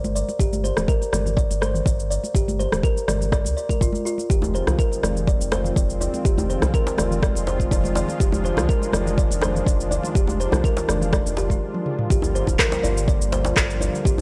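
This driving, warm afro house piece opens on a woody, hollow kalimba playing ringing arpeggios through a low-pass filter and analog delay, over a round sine sub bass with tube saturation, bright close congas and a produced afro-pop kit of handclaps, rim click, shaker and toms, with a deep, up-front electronic kick joining almost at once. From 4.3 seconds a smooth, detuned sawtooth pad with chorus and tremolo holds sustained chords while a hard-handed djembe sits close in the background, and the kalimba, bass and pad each pump with sidechain compression. The congas stop at 11.6 seconds for a short break and drum fill before the drop lands at 12.1 seconds, all in a dry, gritty hardware sound.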